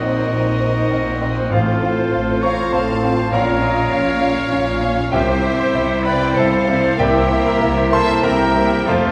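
Tragic and passionate, this romantic classical excerpt for piano and orchestra moves at 98 BPM in a rubato 3/4 in Bb minor, with a brilliant, up-front grand piano carrying the melody alongside an intense, distant violin section, while a roomy oboe, an airy flute, a quiet clarinet and a smooth background violin section weave second lines over a mellow bassoon and very quiet viola accompaniment, dark sustained French horn chords, focused double basses and rich cellos on the bass, a brief hard-mallet timpani touch from 1.5 to 2.4 s, and a wet recital hall reverb heard from further back in the room.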